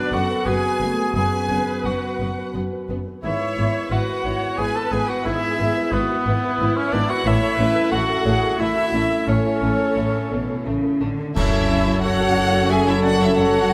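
A solo violin carries the smooth, vibrato-laden melody alongside a lush violin section in this moving, longing film-score excerpt in F# minor, set at 89 BPM in a rubato 3/4. Beneath them, a bright clarinet, a distant cor anglais, a second violin section and a portamento-tinged viola section weave supporting lines over a warm baby grand piano and mellow French horn chords, while a focused cello section and a bowed double bass section anchor the low end in a moderate scoring-stage reverb. The solo violin stops at 10.7 seconds, and at 11.4 seconds an airy silver concert flute enters as dark clash cymbals and concert bass drum mark an accent on F#m7.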